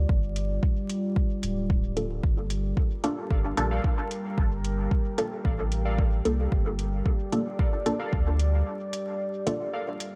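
Meditative and cavernous, this dub techno excerpt in G minor at 112 BPM rests on a Gm7 chord. A deep, moody ambient pad with chorus, built-in reverb and sidechain pumping sustains over a round sine sub bass and a tape-warm, up-front layered kick, joined by metallic analog hi-hats. A muted, detuned chord stab with phaser, dub echo and a filter sweep enters at 2.0 s, followed at 3.3 s by warbling, nostalgic lo-fi synth keys with chorus and echo, all under vinyl crackle in a dark production before a break at 8.7 s.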